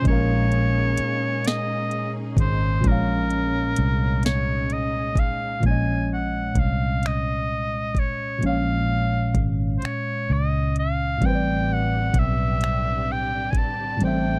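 A bright oboe with light vibrato sings a yearning, late-night melody up front over a worn, slightly out-of-tune tine electric piano with analog chorus, a round, foam-muted fingered bass, a smooth R&B kit with knocking kick, sharp snare, metallic hats and finger snaps, and lush bowed strings in the background that drop out at 5.6 seconds and return at 11.2 seconds, all in a slow, dry, close 1970s-style six-eight R&B excerpt at 43 BPM in Bb minor, moving from Bbm11 to Am11.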